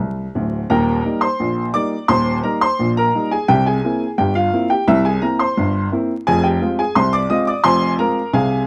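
Playful and jaunty, this short cut from a longer ragtime piece moves at 86 BPM in a straight 2/4 in Eb major. A solo upright piano with a clear, woody, open tone sits up front, opening with a brief fill before settling into a passage that moves from Eb to C7 at 3.5 seconds and Fm at 6.3 seconds, reaching from deep bass notes to bright high ones. The dry, close sound of a small room carries a 1970s studio character, with a layer of vinyl crackle.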